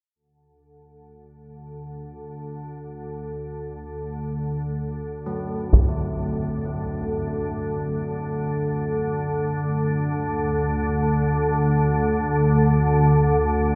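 Dark ambient drone in free time and D major, a desolate excerpt cut from a longer piece and steeped in a huge, wet reverb. A calm, detuned organ-like drone with ensemble chorus sits up front over a D chord from 1.5 seconds, and old church bells join at 5.3 seconds, bronze and clangorous with an iron clapper and beating overtones, ringing arpeggios in the background through tape echo as both parts fade in. A brief hit from a taiko ensemble, struck with heavy sticks in a live room and darkened by a low-pass filter, lands up front at 5.7 seconds.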